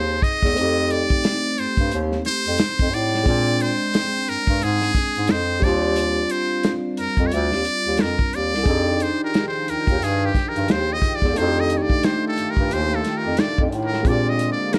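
A swung sixteenth-note groove at 89 BPM in 4/4 drives this smooth, late-night R&B and neo-soul excerpt, with a dry, dark soul drum kit (tight kick, medium-tuned snare, hi-hat) entering at 0.2 seconds beneath a mellow bass clarinet that carries the low line with scooped notes and light vibrato. Up front, a buzzy trumpet with a metal mute carries the melody, while a barky tine electric piano, lightly overdriven through a combo amp and colored by phaser, plays chords moving from Fm9 through F9 and Bb7 to Ebmaj9. At 8.7 seconds a lush, detuned sawtooth pad with chorus slips in behind the band, and a small room ambience surrounds the ensemble.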